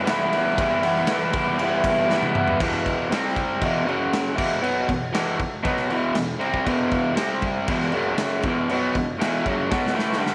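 Garage rock at 118 BPM in E minor, raw and swaggering, with an up-front, double-tracked overdriven electric guitar riff soaked in spring reverb over a punchy, gritty drum kit of kick, snare, toms, ride and crash in a pumping stone room, moving from Em onto an E5, C5 and F#5 riff at 2.6 seconds, with drum fills at 2.1 and 9.7 seconds in this cut from a longer piece.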